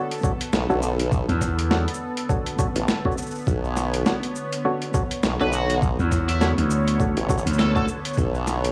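A chorused, tube-saturated formant-sweep wobble bass sits up front in this funky, swaggering glitch hop excerpt, its sawtooth-and-sine growl holding down a single Bm7 chord with a swung sixteenth-note feel. Overdriven, sampler-style drums supply a thumpy kick, a medium-tuned snare, hi-hat and shaker, while a muted, stringy clav plays stabs through analog delay over a smooth, detuned analog pad, both pumping against the sidechain. A punchy, bright slap bass appears briefly at 1.3 s and returns at 6.0 s, and a high-gain lead guitar with 12-bit sampler grit and delay enters at 5.4 s, all captured dry in a small room.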